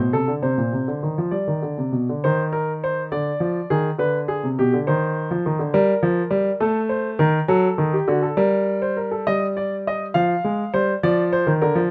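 Joyful and elegant, this short cut from a longer baroque-style two-part invention for solo grand piano moves at 68 BPM in a straight 6/8, counted in dotted quarters. The piano sounds warm, present and polished, placed up front with light reverb, ranging from Bb2 to F5 as its harmonies travel from Bbadd9 through Cm/Eb, Ddim, Gm and D before settling on Bb/F. The opening passage gives way at 2.2 seconds to a longer middle stretch, and a closing passage begins at 9.3 seconds.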